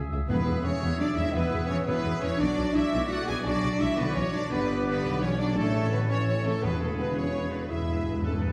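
Set back in a reverberant recital hall, this heroic, triumphant cinematic excerpt moves at 114 BPM in 12/8 in E mixolydian, with a mellow French horn section holding sustained chords at the front while a bright trumpet section punctuates with tight stabs. A clear, intense symphonic violin section carries the melody, joined by an airy flute ensemble, a smooth studio violin section, a focused viola section, a distant oboe and a vintage-toned clarinet, as rich cello and double bass sections and a roomy tuba ground the bass. Close, articulate timpani strike at 0.3 seconds and return at 6.6 seconds, closing with a fill from 7.7 seconds as the harmony moves from E through Bm, G and A back to E.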